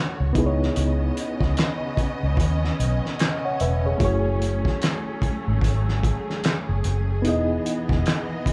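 Smooth and soulful, this brief neo-soul R&B fragment, cut from a longer piece, rides a gentle 16th-note swing as a bright, reedy electric piano with a worn, slightly out-of-tune edge, light overdrive and harmonic tremolo comps over lush, dark bowed strings moving from C#m9 to F#m9 and Emaj7. A round, foam-muted fingered bass sits up front from 0.2 seconds, and at 0.4 seconds a cloth-damped, thuddy kit joins with a fat snare, tight kick, hi-hat and handclaps, its muffled, gritty tone rolled off at the top. The band sounds like it is playing live together in one room with light reverb.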